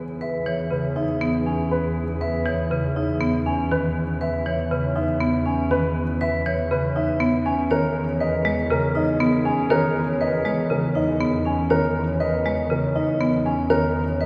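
Heard from far back in a cathedral-like reverb, this propulsive, hypnotic minimalist classical pattern piece at 120 BPM in E lydian sets a dark, intimate baby grand melody with audible action noise against ringing, metallic vibraphone arpeggios, a buzzing, woody hard-mallet marimba, and a lush bowed double bass section with vibrato, while a mellow clarinet in the background drops out at 3.4 seconds and returns at 7.7 seconds, where the harmony moves from Emaj7 to G#madd9/E.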